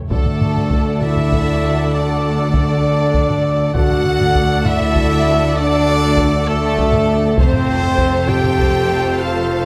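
Mellow French horn chords and heavy-stick taiko drums lead this heroic, triumphant cinematic orchestral passage at 66 BPM in 12/8 and D mixolydian, where a bright, close violin section sings the melody alongside a rich second violin line, clear violas, warm woodwinds in the background, distant trumpet stabs and a lush bowed bass of cellos and double basses, while the harmony moves from D to F at 7.4 s within a moderate scoring-stage reverb.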